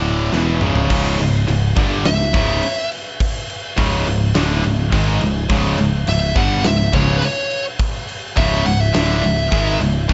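This relentless, aggressive heavy metal piece in C# minor at 104 BPM opens on three riffing guitars sitting back in the mix: a heavy high-gain guitar, a tight distorted guitar and a double-tracked overdriven semi-hollow guitar, all over a growly, punchy picked electric bass. A big rock drum kit, up front with a fat snare and a stone-room sound, enters at 0.3 seconds with a fill before settling into a half-time feel at 0.9 seconds over a C#m chord. At 2.1 seconds a dark high-gain lead guitar with digital delay carries the melody, with studio reverb around the band.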